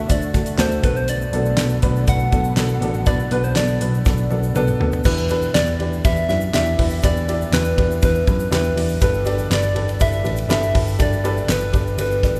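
Bathed in a wet church reverb, this earnest, bittersweet piano-driven pop piece moves at 121 BPM in E minor, with a woody upright piano and a punchy, foam-muted picked electric bass carrying the harmony from D through Bm7 to Em7 and Gadd9. A gentle, keys-like FM synth lead with chorus carries the melody over a dry, up-front 70s drum kit with a fat snare and tight kick, while a grainy egg shaker sits in the background. Very quiet, dark bowed strings add lush sustained chords until 5.0 s, as a drum fill from 4.1 s leads into the second section.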